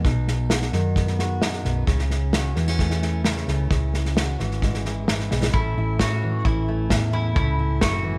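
A small room's ambience and a light reverb frame this short indie folk excerpt, an anthemic, uplifting passage in straight 4/4 at 131 BPM that builds as it goes. A fingerpicked jumbo steel-string acoustic guitar with fresh strings gives a full-bodied bed of accompaniment, moving from B through A/C# to C#m, while a dark, round hollow-body short-scale electric bass, fingered and amped, holds the low end beneath it. An unplugged drum kit sits up front, its punchy kick and medium-tuned snare played with bundle sticks, and a drum fill at 5.3 seconds leads into a new section on A. At 5.5 seconds a bowl-back mandolin joins with picked arpeggios, its double strings adding a warm tone to the top of the arrangement. The drums stop at 7.9 seconds, leaving guitar, bass and mandolin to ring through to the cut at 8.2 seconds.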